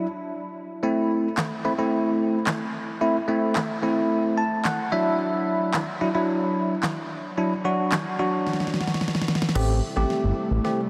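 Dance-pop in A dorian at 110 BPM, this bittersweet, driving passage cut from a longer piece opens with a bright, bell-like tine electric piano carrying the chords through Am and Dadd9 with an analog chorus sheen, joined at 1.4 seconds by an up-front, layered electronic drum kit with a fat snare, handclaps and crash cymbal. At 9.6 seconds a build-up arrives on Am7, bringing in a glossy, nasal chorused synth bass and a lush, detuned unison pad with slow-blooming chorus and phaser, while drum fills drive ahead. The whole mix is dreamy and soaked in a huge ambient reverb.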